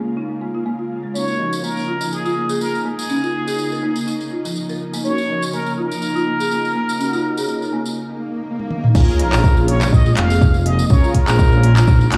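An afro house groove at 123 BPM with a 16th-note swing in Bb minor opens on an airy, warbling pad and woody marimba arpeggios, joined at 1.1 s by a brilliant plunger-muted trumpet melody and mellow synth brass stabs, with a jingly tambourine following a moment later. A swell and sub drop, along with an afro-pop kit fill with smooth hats from 8.6 s, lead into the drop at 8.9 s, where a deep electronic kick, a rumbling detuned saw bass and the kit drive the earthy, dreamy, reverb-soaked fragment.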